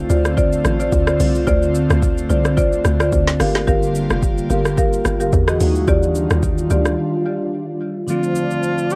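An airy, chorused pad pumping against a hollow, bouncy log drum bass opens this late-night, deep amapiano excerpt, joined by dark, woody marimba stabs steeped in tape echo and plate reverb and an overdriven, up-front afro-pop drum kit with a deep kick and metallic hats, before the bass falls away at 7.0 s and a whispered alto saxophone melody and a bell-like tine electric piano arrive at 8.1 s, all heard through the lo-fi haze of a home cassette recording.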